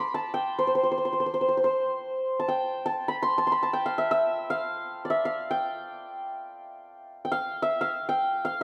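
In free time, this brief cut from a Persian modal ensemble piece features a solo santur, hammered and shimmering, placed up front and ringing between C5 and D6, tuned to A4 = 437 Hz. The mood is festive and warm, with an opening phrase that ends at 2.1 seconds and is taken up again through 8.6 seconds. A moderate recital hall reverb gives the strings a natural sense of space.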